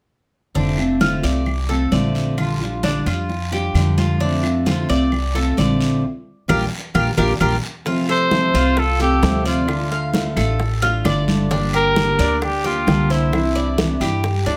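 A relaxed 132 BPM Cuban son groove in F major opens with picked, full-bodied acoustic guitar, metallic double-strung tres arpeggios, a thumpy up-front pizzicato upright bass, soft-handed congas, raspy guiro and woody claves, then after a band accent and drum fill, tight high bongos join at 7.9 seconds and a breathy, whispered trumpet with vibrato and plate reverb carries an intimate solo melody over a Dm, Gm and Cadd9 progression.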